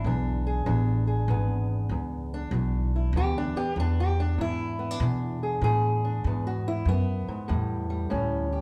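A live, roomy sound from a large studio with moderate reverb frames this soulful, gritty acoustic country blues in E mixolydian at 97 BPM with a swung 4/4 feel, as an up-front, fingerpicked old ladder-braced acoustic guitar with dark, boxy old strings carries the melody over an equally up-front, woody pizzicato upright bass on steel strings, both playing throughout this 8.6-second fragment of a longer piece as the harmony moves from E7 to A7 at 7.5 seconds.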